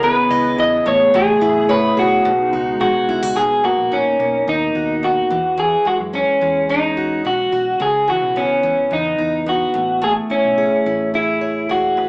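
Indie pop with a bedroom-pop lean, this sunny, laid-back clip is cut from a longer piece and moves at an unhurried, straight-feel pace. Up front, an electric guitar through a small old amp carries the melody with a bright, twangy, slightly broken-up lo-fi tone. Beneath it, a picked plugged-in jumbo acoustic guitar fills out the accompaniment with a full-bodied sound and a warbly pitch drift. A round, dark hollow-body short-scale bass sits low in the mix, while a hollow, flute-like pad with ensemble chorus holds soft sustained chords in the background until about 3.3 seconds. The harmony drifts through lush ninth and sixth chords such as C#m9, Amaj9 and E69, and the whole band sounds as if playing live in one room through a small speaker, wrapped in moderate studio reverb.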